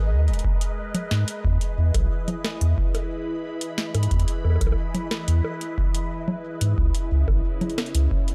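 This eerie, glitchy IDM excerpt opens at once with a round sine sub bass sitting up front, a swirling sawtooth pad carrying sustained, detuned chords through phaser and chorus, and a flickering granular texture drifting in the background on a single high note with its own reverb and sidechain pumping. Within the first half second an overdriven analog drum machine arrives, booming with bongos, congas, metallic hi-hats and a crisp snare, followed at 0.4 s by a deep, up-front electronic kick that is likewise overdriven. The tempo is a straight 90 BPM in 4/4, and the harmony moves from Abmadd9 to E at 1.4 s, then settles on Dbm7 at 6.8 s. The pad's slow attack, airy noise layer and long release give the piece an evolving haze, while the mellow, grainy shimmer of the texture adds unease. The sound is dry and gritty, with the transformer saturation of a hardware recording and little room reverb.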